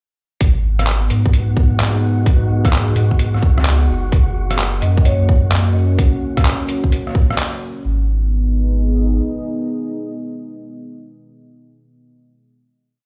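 A tight, muffled two-step kick sits up front in this nocturnal, wistful future garage piece, joined by a skittering, pitched-down lo-fi kit of rim clicks, closed hi-hat and handclaps, a round sine sub bass with long gliding notes, a detuned sawtooth pad with chorus and sidechain pumping, a breathy wind-like noise layer holding a high note in the background, and a brief metallic vibraphone phrase struck with hard mallets through digital delay at 4.8 seconds, before the drums fall away around 7.5 seconds and the pad's moody final chord carries on alone from 9.2 seconds in a large, reverberant room.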